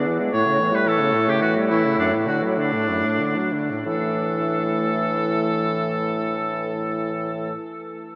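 A light-vibrato oboe carries the second line alongside a horn, a soft-attack clarinet and a mellow, vintage-toned bassoon on the bass, all entering together at the start of this lively, cheerful classical-period wind quintet movement in A major and 3/4, at 89-113 BPM with a rubato feel that slows through the first 3.9 seconds. The distant yet up-front oboe sits over the clarinet's smooth top, with the clear horn beneath, while a huge, wet reverb places the group in a vast, echoing space. At 3.9 seconds the music moves into a new section for the rest of this brief cut from a longer piece.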